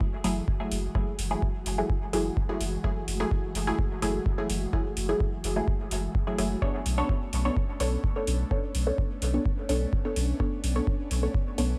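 A steady, straight pulse from a deep, tape-warm analog kick drives this nocturnal, hypnotic dub techno excerpt, with metallic electronic hi-hats ticking above a round, soft sub bass that pumps under the kick, while muted, detuned sawtooth chord stabs carry a filter sweep, phaser and dub echo over an airy, breathy pad with chorus, all in a dry, close room as the harmony moves from F#m9 to Bm9 at 6.6 seconds.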